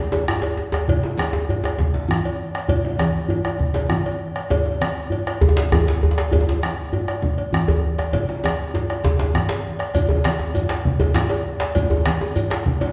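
Powerful and earthy, this West African traditional drum ensemble excerpt moves at 132 BPM in a straight 12/8, with two djembes: one tight and cracking, struck with hard hands up front, the other medium-tuned and distant. Low-tuned congas with a thick skin, a round, band-limited bombo and a metallic, close cowbell fill out the groove, and a drum fill from 8.1 to 9.9 seconds carries the music into a new section. There a grainy, mellow shekere enters in the background at 9.9 seconds, all of it set in the long reverb of a recital hall.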